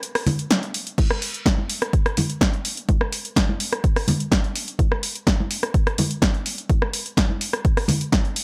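A dry, gritty hardware recording with little reverb carries this sunny, feel-good house excerpt in straight 4/4. A tape-warm analog drum machine sits up front with a punchy snare, rim clicks, hi-hats and crash cymbals, while a bright, close tube shaker and congas, softened by a low-pass filter, pump under sidechain along with the hats and cymbals. After a kick-free opening break, a punchy electronic kick drum enters at 1.0 seconds and drives the groove from there on.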